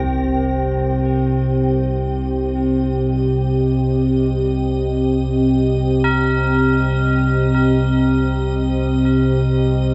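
Drifting in free time, this desolate, unsettling dark ambient drone in C minor is cut from a longer piece and soaked in a huge, dreamy reverb with a cassette-tape tone that tops out at 7.8 kHz. A deep, ominous rumbling drone and a moody, detuned analog pad holding sustained chords sit up front as the pad sound fades in across the full 9.9 seconds, while tubular bells ring out solemn, metallic arpeggios through delay and shimmer reverb. High above, a faint icy glass pad adds a crystalline, airy texture on a single Eb5.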